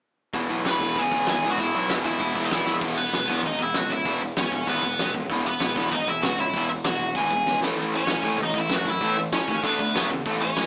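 Punk rock at 194 BPM in E major, upbeat and rowdy, where a nasal, parked-wah lead guitar sits up front with a dark overdriven melody from 0.7 seconds over two bright, overdriven rhythm guitars (one hollow-body) tucked in the background playing riffs, a growly fuzz-picked bass, and a distant, roomy indie drum kit with a fat snare and punchy kick that throws in fills at 2.7 and 7.5 seconds, all captured as a band playing live in one room with light reverb and a small-speaker sound.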